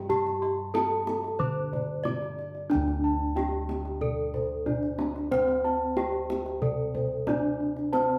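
Recorded live in one room with a moderate studio reverb, this short cut from a longer Javanese gamelan piece feels ceremonial and serene, as a close, ringing bronze metallophone carries the melody with shimmering beats from its paired tuning over round, beating bossed gongs holding the bass, while a second set of mid-forward bossed gongs plays arpeggios and a tight, distant kendang sounds under soft hands.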